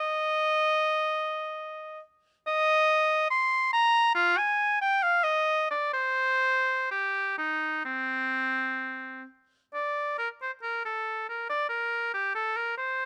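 Classical baroque-style fantasia in C minor for unaccompanied oboe, solemn and grave at a rubato 62-72 BPM in 4/4, with the clear, up-front oboe ranging from C4 to C6 across this brief 13.1-second excerpt, captured by close, detailed microphones in a dry space with little reverb.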